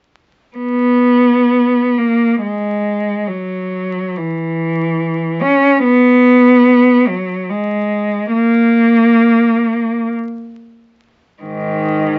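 Through the crackle and muffled top of a very old 78 rpm record with light reverb, a single bowed cello, rich and up front with smooth vibrato, plays a yearning, mournful classical fragment in G# minor, moving freely in rubato 3/4 between 37 and 76 BPM from 0.6 to 12.2 seconds, cut from a longer piece.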